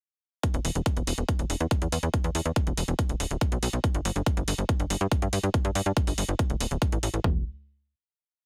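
A tight, punchy sequencer bass anchors this short psychedelic trance piece, rolling in sixteenth notes from D1 to G2 with a sawtooth and square-wave tone, ring modulation and a plucked filter shape whose fast attack decays, sitting up front from 0.5 seconds. Alongside it, from 0.4 seconds, a big-room electronic dance kit drives a four-on-the-floor kick, layered and produced with a hard-hitting low end and floor tom, also placed prominently in the mix. An overdriven, programmed electronic hi-hat part supplies closed and open hats and a backbeat across the groove. The mood is driving and alien, moving at 141 BPM in a straight 4/4 in E minor, tuned slightly sharp to A4 = 441 Hz. A digital ambience surrounds the parts, and after the groove ends at 7.2 seconds a final chord closes the piece.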